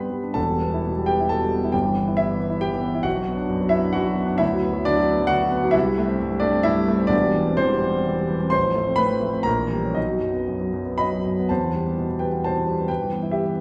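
A romantic classical character piece for solo grand piano in E minor, lyrical and hopeful, moving in a rubato 3/4 between 108 and 139 BPM across this brief passage cut from a longer work. The piano sounds intimate and natural, with audible action noise and long sustain, spanning E1 to C6 as the harmony passes from Em through Bm and C6 to an A#dim7 and B before returning to Em at 11.5 seconds. A wet recital hall reverb surrounds the instrument, lending the sense of hearing it from further back in the room.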